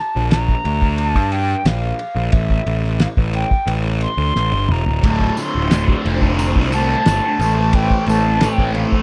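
A fuzzed, overdriven electric bass sits up front in this mysterious, hypnotic psychedelic rock excerpt at 89 BPM, joined from the start by a mellow, hollow concert flute carrying the melody with vibrato and slapback echo and a cloth-damped, thuddy drum kit with dark cymbals and a fat snare. After a drum fill at 4.4 seconds, a double-tracked fuzz guitar riff with phaser and a very quiet, lush bowed string section enter at 5.0 seconds, with a jingly tambourine tucked in the background shortly after. The harmony moves from Bb to Am, then Dm7 back to Am, captured in a dry, close 1970s-style studio sound.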